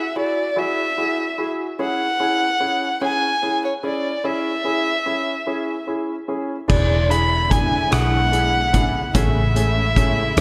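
A dark, woody violin carries the melody from the very start, bowed sul tasto by a single player with vibrato and a smooth top, sitting up front in this aching, dramatic six-eight pop ballad at 49 BPM. A warm baby grand piano joins at 0.2 seconds with polished, present accompaniment touched by a subtle chorus, moving from Eadd9 to C#m. At 6.7 seconds the arrangement fills out as the harmony shifts to E7 and then Amaj7. A veiled, con sordino string section enters in the background with soft-attack sustained chords. A round, punchy, foam-muted fingered electric bass and a loose, roomy indie drum kit with dark cymbals, a tight kick, rim click and gated reverb arrive at the same point. A moderate plate reverb and bright 1980s-style digital production frame this short cut from a longer piece.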